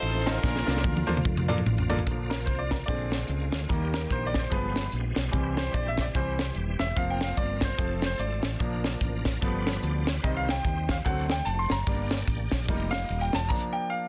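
Swinging at 147 BPM in 4/4, this uplifting, soulful uptempo gospel piece in Bb major opens with a punchy horn section stating the melody for about a second, while a dry, tight funk drum kit with a high-tuned snare plays a fill from 0.4 seconds, a round, dark fingered electric bass holds down the low end, a shouting tonewheel organ with slow rotary speaker, chorus vibrato and key click sustains chords in the background, and a brilliant, up-front grand piano takes a solo from 2.1 seconds over chords moving through Eb, G7b9 and Cm to a closing Bb/F, inside a dense, heavily limited modern master with light studio reverb.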